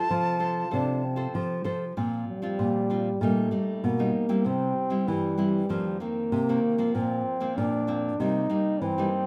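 The recording sits in a moderately reverberant large studio, with every instrument placed up front, in this lively, sunny samba cut from a longer piece. A silver concert flute opens with a short, airy, metallic phrase with vibrato and a soft attack, and drops out at 1.3 seconds. A breathy trombone plays a second line from the start, then moves into a jazz-style solo at 2.0 seconds that runs to the close at 9.3 seconds. The trombone's tone is whispered and intimate, with light vibrato, scooped notes, a soft attack and a smooth top. Beneath it, two classical nylon-string guitars carry the harmony: a full-bodied, thumb-plucked bass line and a fingerpicked accompaniment with audible finger squeak. The chords move through F, Bbsus2, Eb/Bb, C, F7sus4 and Bbsus2 again before ending on Cm7.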